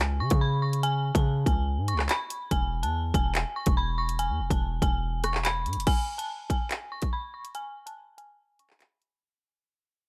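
An eerie, detuned FM synth bell carries the melody in this dark, tense drill excerpt at 143 BPM in a half-time feel, its inharmonic, full-bodied tone given chorus and a low-pass filter over chords moving from C#5 to E. A punchy, heavy 808-style sine bass with a noise layer sits up front until it drops out at 5.9 seconds, while an electronic drum kit with a hard-clipped kick, bright hi-hats, handclaps, rim clicks and crash enters at 0.3 seconds. A digital ambience surrounds the mix, and the fragment fades out from 5.9 to 9.2 seconds.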